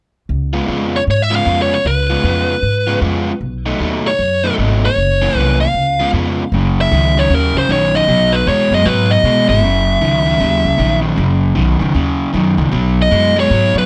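Soulful and rollicking, this electric blues shuffle swings as a woody, growly plucked upright bass enters at 0.3 seconds, an overdriven semi-hollow guitar sits up front picking a hollow-bodied riff, and a biting, overdriven lead guitar carries the melody from 1.0 seconds, all in a moderate club reverb over a C#7, B7 and F#7 blues progression.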